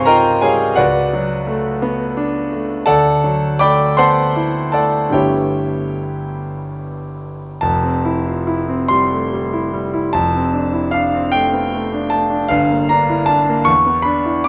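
Dreamy and serene, this excerpt of impressionist classical solo piano drifts in a rubato 6/8 on a clear, natural-sounding concert grand with a deep bass, heard up front in a moderately reverberant recital hall, its lush extended harmonies shifting to a new tonal colour at 7.6 seconds.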